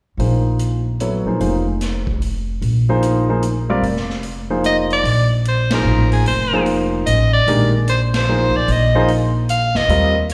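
An edgy, forceful soprano saxophone takes the solo melody at 4.7 seconds, playing up front with vibrato and a slapback echo in this searching, cool modal jazz excerpt, swinging in 3/4 at 148 BPM over a Bb9sus4 chord. A clear baby grand piano with short sustain and its own slapback echo comps alongside a woody pizzicato upright bass, while a distant big-band drum kit with a boomy kick and rolled-off top keeps hi-hat, ride and snare swinging. The band hits accents at 5.7 and 8.1 seconds, and the whole performance comes through a venue's PA into a lush recital-hall reverb, as if heard at a live gig.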